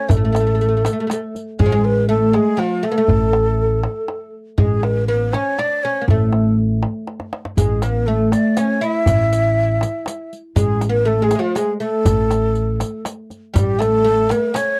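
A Persian modal ensemble piece in dastgah chahargah on A, this stately, passionate excerpt moves at 120 BPM in a straight 3/4. A breathy, end-blown reed-cane ney carries the melody with vibrato and crisp, expressive attacks, while a bright, fretless oud plucks a double-stringed second line, an upright bass holds a woody pizzicato A1 beneath, and a warm, tight tombak keeps time throughout. The riq's dark jingles and soft hands sound briefly at the start and return at 7.6 seconds after a drum fill, captured in a dry, close 1970s-style studio sound.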